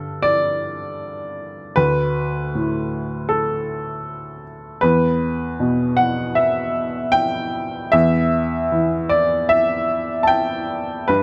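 A woody, polished upright piano plays alone and up front in this short, reflective and melancholic neoclassical minimalist excerpt in E minor, moving with rubato at 78 BPM in 4/4 through Gsus2, D5 and Em until the chords give way at 7.9 seconds, set in a moderate studio reverb.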